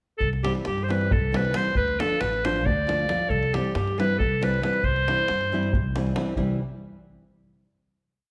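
A bright, soft-attacked clarinet with a vintage, classical tone leads this short, virtuosic and exuberant Balkan wedding-band piece in 7/8 with an up-front, motif-based solo melody, over fingerpicked nylon-string guitar playing close-voiced off-beat chords with audible finger squeak, woody pizzicato upright bass on root and fifth along the main beats, and a deep davul in a two-stick pattern, all set in a moderate recital-hall reverb before closing on a final chord at 6.4 seconds.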